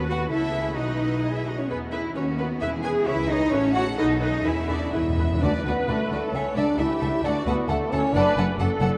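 Up-front yet roomy French horns enter at 4.7 s with sustained chords in this graceful, lively classical-period orchestral passage at 132 BPM in 2/4 with a rubato feel, where an intense, clear violin section carries the vibrato-laden melody in the background, a close, expressive second violin line and a distant, smooth viola accompaniment fill the middle, rich, even cellos and double basses hold the bass, hard-mallet timpani enter at 2.6 s and add an articulate fill from 4.5 s, and the key shifts from E major to D major at 5.4 s, the whole orchestra bathed in the huge, echoing reverb of a vast space.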